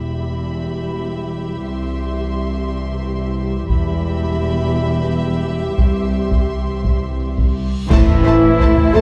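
A dark, warm production with moderate hall reverb opens this cut from a longer cinematic orchestral score, moving at a slow 58 BPM in 6/8 with a relentless, brooding mood. Bowed strings carry the opening: a lush, distant violin section sings the high melody over a clear, intense second violin line, while a smooth, close viola section, expressive cellos and an even double bass section fill out the accompaniment and bass. Beneath them, a sombre French horn section and a tight, very quiet trombone section hold sustained chords as the harmony rocks between Em and C. Heavy-sticked taiko drums enter close and forceful at 3.7 seconds, driving the music forward, and a huge reverse cymbal rises at 7.7 seconds. At 7.9 seconds the music lands on Am with a full-band accent and impact, adding roomy trumpet stabs, a pure, hollow flute line, a sustained string section, and clash cymbals with concert bass drum.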